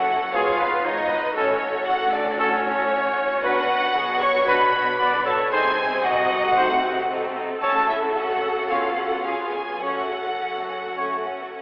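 A rich, focused violin section carries the vibrato-laden melody up front in this dramatic, restless classical passage in F# minor at 113 BPM, its rubato pulse supported by airy, distant flute, a clarinet, a background second violin section, portamento violas, cellos and double basses, a very quiet dark horn section holding chords and soft-edged trumpet stabs, all bathed in a wet concert-hall reverb with a telephone-like tone as the harmony moves from F#m/A through Bm and Cdim7 to C#7 before settling on F#m at 9.8 seconds.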